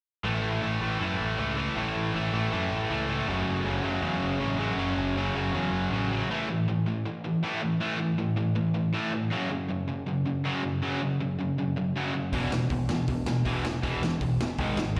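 Two bright, crunchy electric guitars open this upbeat, rebellious punk rock piece, sitting up front with slapback echo on their low riffs, together with a growling picked electric bass with its own overdriven edge. The harmony moves from A to F#m, then shifts at the start of the second section into power chords on A5, F#5, E5 and G#5. The bass drops out at 6.2 seconds, leaving the two distorted guitars to carry the riff on their own. At 12.3 seconds the bass returns alongside a raw garage drum kit, whose punchy kick, medium-tuned snare and hi-hat come across gritty and saturated, with a pumping small-room sound and a rolled-off top. The whole performance has the feel of a live gig heard through the venue's PA, wrapped in light reverb from a recital hall, and it is cut from a longer piece.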